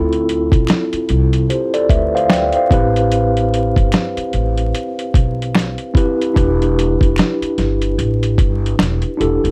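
A muffled, overdriven sampler-style drum kit with a thumpy kick and medium-tuned snare sits up front in this nostalgic, reflective lo-fi hip hop excerpt at 74 BPM in E phrygian, swung on the 16ths, alongside a woody pizzicato upright bass on gut strings and a mellow tine electric piano with a cassette-tape tint moving through Dm7, Am7 and Em7, with a close, dry finger snap joining in the background from 0.7 s, all under light reverb and vinyl crackle.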